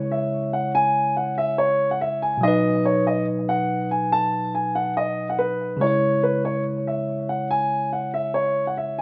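A rough home demo sound in a moderate studio room carries this tense, cold half-time hip hop fragment at 142 BPM in C# minor, where a bell-like, clean tine electric piano, low-pass filtered and up front, lays down the accompaniment from the start while a dark, mellow baby grand piano with long sustain, plate reverb and its own low-pass filter carries the melody from 0.1 seconds, the harmony moving from C#m to B at 2.4 seconds before returning to C#m at 5.8 seconds.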